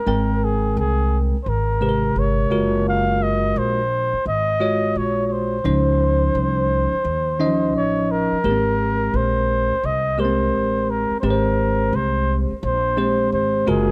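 Hip hop at 86 BPM in Ab major with a cool, relaxed 16th-note swing, this short cut from a longer piece sets a breathy, whispered flugelhorn solo with mellow vibrato and a soft attack over a bell-like, clean tine electric piano and a woody, thumpy pizzicato upright bass on gut strings, all up front in a small room with light reverb, moving through Abmaj9, Gbmaj9 and Dbmaj9 before returning to Abmaj9 at 8.4 seconds.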